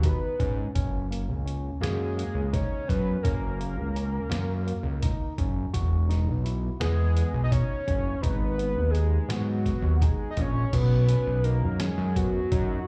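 A thick, detuned sawtooth bass with a filter sweep anchors this brooding, intricate excerpt of progressive instrumental band music in 7/8 at 168 BPM (eighths), sounding from the first beat together with a muffled, pitched-down sampler-style drum kit with a thumpy kick, a fat, mellow analog lead carrying the melody with vibrato and slapback echo, and a bright, barky, lightly overdriven tine electric piano playing arpeggios through slapback and tape echo over chords moving from G#m through F#add9 and Eadd9. A very quiet, clean tine electric piano then enters at 10.7 s as the harmony lands on B, all heard at a live gig through the venue's PA with a touch of club reverb.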